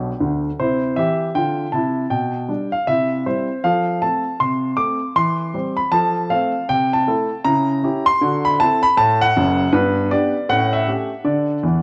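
A swinging 4/4 at 157 BPM with a 62% eighth-note lilt drives this playful stride-piano jazz fragment in C major, tuned to A4 = 439 Hz, where a lone grand piano, present, polished and up front, sounds through a cassette-tape patina and light studio reverb in a home recording, opening with a quick fill before settling at 0.6 s into a passage that moves through G/B, C#dim7 and D9 and closing with another fill at 11.6 s over a Dsus2.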